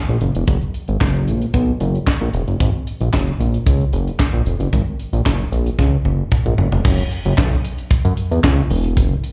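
Smooth and feel-good, this short excerpt cut from a longer piece sits in early-eighties boogie funk at 113 BPM in a straight 4/4, centred on F# mixolydian. A fat analog bass enters at 0.1 seconds, its detuned sawtooth tone thick and sustained with a fast attack and a filter sweep, sitting up front in the low register between E1 and F#2. A tight funk drum kit joins at 0.2 seconds, acoustic and mid-forward with a small-room character, built from a high-tuned snare, a tight kick, hi-hat, handclaps, toms and crash cymbal. A drum fill from 5.8 to 6.8 seconds leads the groove into a new section that runs to the end. The sound comes across like a live gig heard through the venue's PA, with a touch of club reverb around the two up-front parts.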